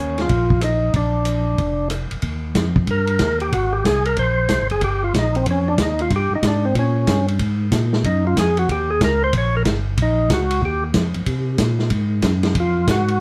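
This soul jazz organ trio excerpt opens on two tonewheel organs together: a percussive organ carrying the melody, with key click, third-harmonic percussion, light overdrive and a slow rotary speaker, and a fat, lightly driven organ handling the bass line with chorus vibrato and its own slow rotary swirl. A dry acoustic soul drum kit joins at 0.2 s, with a tight kick, medium-tuned snare, rim clicks, hi-hat and ride cymbal, its sound mid-forward with a rolled-off top. The tempo is a brisk 186 BPM in 4/4 with a swung eighth-note feel, and the mood is bluesy and swinging in Eb mixolydian. A tonewheel organ solo begins at 2.2 s and runs to the end, over chords moving through Ebadd9, Ab9 and Eb9 before reaching Gbadd9 and Fm. The trio is heard from further back in a moderate club reverb.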